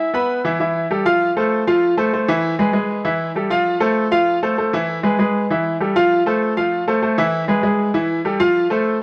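Fiery and passionate, this brief Latin excerpt in A minor at 196 BPM features a bright, brilliant baby grand piano playing alone, up front with long sustain and tape echo, cycling through A5, F and E chords over about 9 seconds in a moderately reverberant studio, colored by the warbling pitch drift of worn cassette tape.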